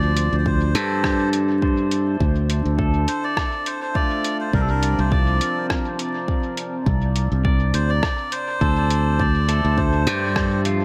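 Meditative and deep, this ambient dub fragment at 103 BPM in D minor drifts over Dm9 and C9sus4 as a reedy, breathy melodica melody with dub echo weaves among filtered pedal steel guitar arpeggios, a dark, detuned pad with chorus sustaining in the background, a growly, up-front fingered electric bass, a muffled, pitched-down sampler kit of hi-hat and rim click, and a tape-warm electronic kick, all set in spring reverb with echo-heavy mixing and vinyl crackle.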